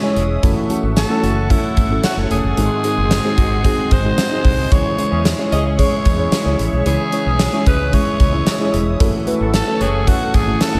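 A straight 4/4 pulse at 112 BPM drives this dramatic, moody 1980s-style pop piece in C# minor, with a gated drum kit up front: a fat snare, a punchy kick, hi-hat and tambourine ringing in a big, airy room, joined by a very quiet, jingly separate tambourine close by. Beneath it, a dark, round fretless bass holds the low end, while a warbling, vintage FM electric piano with a fast, decaying attack, phaser and slapback echo carries the accompaniment through F#m7, G#7 and C#m. A bright, compressed clean guitar riff, recorded direct and treated with analog chorus and slapback echo, sits in the background alongside a sweeping, detuned sawtooth pad whose soft attack and long release sustain airy, evolving chords high above. From 1.0 seconds a raspy, gritty alto saxophone takes the melody with an edgy, present tone and its own slapback echo, and at 5.1 seconds a distant, mellow horn section adds very quiet stabs with light vibrato. 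A lush hall reverb gives the whole mix a big arena sound, and the passage is cut from a longer piece.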